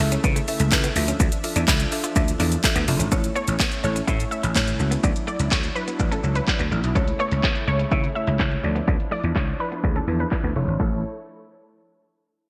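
A carefree, summery dance-pop excerpt in A major opens with a punchy analog drum machine, its kick, handclaps, hi-hat, shaker and crash cymbal sitting up front in gated reverb, alongside a growly, amped slap bass that also sits forward in the mix. Moving at 125 BPM in a straight 4/4, the groove pumps through sidechain on the bass, a woody, round FM mallet-like synth pluck with chorus, and a smooth, full-bodied supersaw holding sustained chords in the background. A clean, direct-recorded electric guitar with a scooped, compressed tone plays a riff behind them, treated with lush chorus. At 3.4 seconds a warbling, ring-modulated unison pluck enters with the melody, carrying delay and sidechain pumping, while a filter sweep runs from 3.1 to 10.8 seconds. The harmony moves between A and D-based chords, and the whole piece has a bright 1980s-style digital sheen in a moderate hall reverb.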